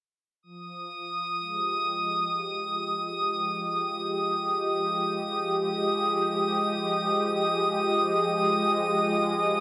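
A worn, warbling cassette sheen and a huge ambient reverb wrap this brief excerpt of free-time ambient music in F minor, its spacious, melancholic mood resting on a single Fm7 chord. A detuned sawtooth analog pad with soft attack, chorus and tremolo fades in from 0.5 seconds, holding smooth sustained chords between F3 and Eb5. A moment later a drifting, glassy sine texture with slow attack, long release, chorus and its own reverb settles on a high Eb6, its calm overtones hovering up front until the cut at 9.6 seconds.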